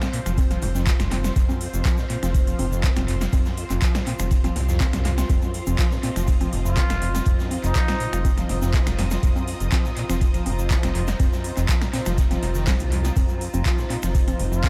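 An overdriven electronic kick drum sits up front in this raw, driving acid house excerpt at 122 BPM in a straight 4/4. A round, dark analog bass and a squelchy, resonant acid bass riff with distortion and analog delay pump beneath it, alongside sidechained string-machine chords with ensemble chorus and a cloudy, granular pad, while an analog drum machine with punchy snare, metallic hats, congas, finger snaps and handclaps plays alongside a very quiet, gritty garage kit and a grainy egg shaker. A raspy, growling plunger-muted trumpet with light vibrato and scooped notes enters at 6.7 seconds, a drum fill arrives at 12.7 seconds, and the whole mix is steeped in heavy studio reverb.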